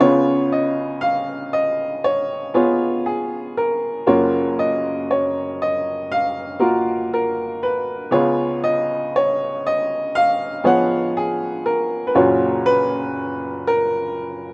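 Hopeful and tender, this slow acoustic folk-pop ballad moves at 59 BPM in a straight 4/4, cut from a longer piece and carried entirely by a solo upright piano. The piano sounds bright, brilliant, woody and open, placed up front with short sustain, ranging from F#1 to F#5 as it alternates between C#7 and F#maj7 chords. Light reverb and a small-room ambience surround the rough home-demo sound.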